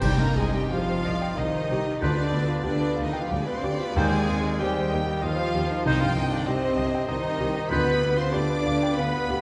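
Passionate and brooding, this romantic classical excerpt in a rubato 3/4 places an intimate concert grand piano up front, with deep bass and audible action noise, beside a focused violin section carrying the melody, while a lush second violin section adds a line in the background, very quiet violas accompany, smooth cellos, double basses and a distant tuba hold the bass, a hollow flute, bright oboe and clear clarinet contribute second lines, a French horn section sustains chords, a trumpet adds stabs, clash cymbals, concert bass drum and hard-mallet timpani strike an accent in the opening second, and a wet scoring-stage reverb surrounds the ensemble.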